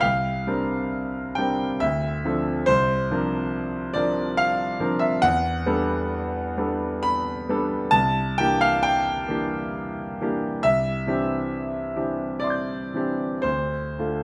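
Heard up front in a moderate recital-hall reverb, a clear, open concert grand piano with deep bass plays hazy, wistful impressionist classical music alone in a rubato 3/4 at 56-71 BPM, drifting through lush extended harmonies such as C9sus4, Dm9 and Em11 before settling toward Cadd9 and Dm in this fragment cut from a longer piece.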